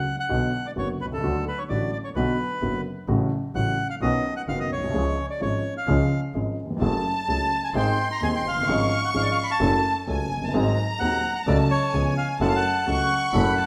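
Played rubato in 4/4 at around 129 BPM, this tense, melancholic tango fragment in F# harmonic minor is led by a reedy, airy bandoneon melody sitting up front, over warm baby grand piano accompaniment and a single bowed double bass with a focused vibrato tone. At 6.8 seconds a lush, distant violin section enters with an intense, bright second line in a high register, while the harmony moves through F#madd9, G#7 and C#7 before settling on F#m. A large, wet studio reverb surrounds the ensemble in this passage cut from a longer piece.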